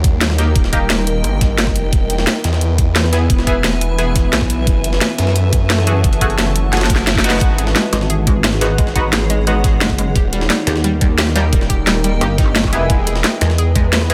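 Set in a light reverb, this dark, aggressive piece of technical drum and bass at 175 BPM in 4/4 puts its overdriven drums and a snarling bass up front. A knocking electronic kick, re-recorded in a small room, is layered with a cracking snare, bright hats and rim clicks, while a gritty, pitched-up jungle-style sampler kit with a high-tuned snare and filtered hats sits compressed in the background. The growling, detuned saw bass is saturated and carries a moving notch, pumping with sidechain under a deep, warbling, vintage ambient pad and a blurred granular cloud pad. A band-passed, nasal chord stab with phaser and tape echo flickers briefly at the start and returns at 3.1 seconds. After a drum fill with a very quiet reverse cymbal at 6.9 seconds, a round analog pluck arpeggio with ring modulation and a filter sweep enters at 7.4 seconds. Soon after, a heavy, pulsing wobble bass joins as the chords move through D#, E, F#m and G#m7.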